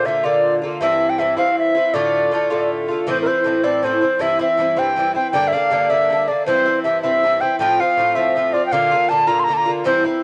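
A driving 6/8 Celtic jig at 106 dotted-quarter beats per minute, this dark yet lively folk passage is cut from a longer piece. A reedy wooden flute carries the melody up front with a crisp attack and vibrato, while a picked Irish bouzouki, its doubled strings ringing metallic, accompanies through chords moving from Bb, C and Dm to Am, Gm, F and back to Bb. Both parts carry a cassette-tape colour, set in a small, lightly reverberant room on a home cassette recording whose top end stops at 10.9 kHz.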